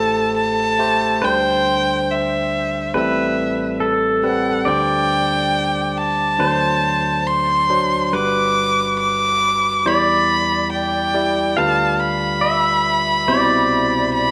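Tender and intimate, this acoustic folk-pop ballad in G major moves at a slow 70 BPM in straight 4/4, cut from a longer piece. A single rich, boxy violin carries the up-front melody with expressive vibrato and portamento, while a twangy pedal steel guitar, played with fingerpicks and slide, adds a compressed second line with volume swells and slapback echo. Underneath, a barky, lightly overdriven tine electric piano supplies direct accompaniment through chords like Am7, D7sus4, Gmaj7 and Cmaj7, all set in a moderate plate reverb across the full 14.3 seconds.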